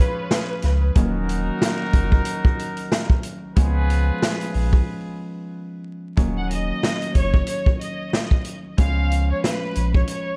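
Dark and tough, this boom-bap hip-hop excerpt in Eb minor rides a swung 92 BPM groove, with an up-front vintage drum kit of punchy kick, medium-tuned snare and hi-hat set against a deep, round sub bass, all under a layer of vinyl crackle and small room ambience. A fingerpicked Celtic harp rings out in accompaniment throughout, while a bright, tight trumpet section fires classical-style stabs until 4.8 seconds, leading into a short break. After a brief opening phrase, a rich chamber violin section returns at 6.4 seconds to carry the melody with smooth vibrato and a touch of delay, moving between Ebm7 and Db7 chords.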